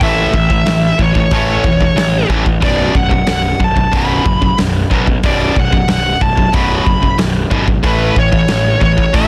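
A big rock drum kit drives a straight 92 BPM pulse in 4/4 with a punchy kick, medium-tuned snare and hi-hat up front in this heavy, dark metal fragment, where a fuzzy, overdriven picked bass and two bright distorted rhythm guitars in the background churn low riffs under a high-gain lead guitar carrying the melody with digital delay, all moving from A to B5 at 2.6 seconds and back to A at 7.8 seconds beneath light reverb and a dense, heavily limited modern master.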